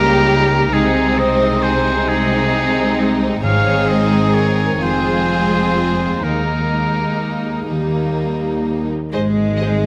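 Tender and warm, this slow romantic orchestral movement in Ab major sways in a rubato 6/8 at roughly 41-45 BPM, taken from a longer piece and bathed in a lush scoring-stage reverb. A distant, smooth violin section carries the melody while a clear, up-front solo oboe with light vibrato sings a second line alongside a close second violin part, over a rich viola accompaniment, ringing fingerpicked harp arpeggios in the background, and a bass foundation of cellos and soft-attack double basses. Very quiet, articulate timpani sound on Ab from 3.4 to 4.8 seconds as the harmony settles from Eb7 over Db through Ab, F minor and a suspended Eb before resting on Ab.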